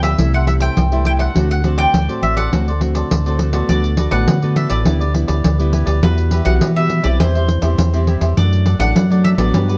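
Festive and playful, this short cut from a longer samba and choro piece moves at 103 BPM in a straight 4/4, settling into D major from 3.7 seconds. A mandolin with doubled strings carries the round, picked melody between B4 and G5, touched by a slapback echo. Beneath it, a crisp cavaquinho and a fingerpicked, classical-toned nylon-string guitar supply the accompaniment, while a dark fingered electric bass sits up front as the most prominent part. A jingly pandeiro, close and dry, drives the percussion, and all five parts play throughout the 9.8 seconds. The harmony opens on C6 and D7 before passing through D6, G6/D, Emadd9 and C/E to land on D, all captured by close, detailed microphones in a light reverb.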